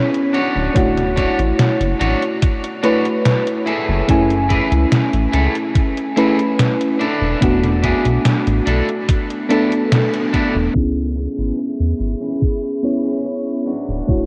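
A mellow, round FM electric piano, warbling through lush chorus, cassette tape and diffuse ambient delay, opens this faded, nostalgic vaporwave excerpt at 72 BPM, carried over Dmaj7, F#m9 and E7sus4 by a thumpy electronic kick, a detuned 8-bit drum machine with an up-front snare, a glossy, nasal chorused synth bass and a twangy, slightly broken-up electric guitar riff, before a band accent at 9.9 seconds and a filter sweep from 10.8 seconds bring in a lo-fi, warbly tape-like pad, all drenched in a huge, dreamy reverb.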